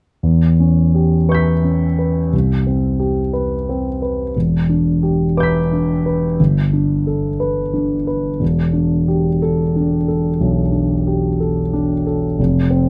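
Wistful and nocturnal, this brief passage from a longer classical piece in an impressionist vein unfolds on a solo concert grand piano at a slow 59 BPM in 4/4, played with rubato in E minor. The piano sounds warm and natural, with deep bass and a range stretching from E1 to B6, captured up front by close, detailed microphones in a dry space. Its harmonies drift through Em6, C5, Em7 and Gadd9 before turning to F5 at 12.4 seconds.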